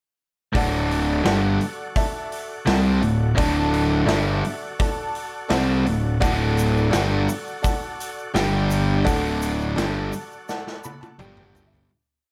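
A light reverb and small room ambience frame this short, complete classic rock piece in D major, which moves at a straight 84 BPM in 4/4 with a driving, sunny mood. Two overdriven electric guitars, one biting and one sludgy, play a power-chord riff, the biting one entering at 0.5 seconds and the sludgy one at 0.6 seconds, joined by a fuzz-laden picked bass that doubles the riff in driving eighth notes. A big acoustic rock drum kit sits up front yet roomy, with a punchy kick and medium-tuned snare carrying a big groove. A jangly, metallic tack piano chops quarter-note chords in close voicing, while a very quiet tonewheel organ holds chords through a fast rotary speaker, its key click audible and its inversions changing. A grainy egg shaker slips into the background at 6.2 seconds, and the piece fades out from 9.1 seconds as a drum fill and a honky-tonk piano fill close it from 10.5 seconds.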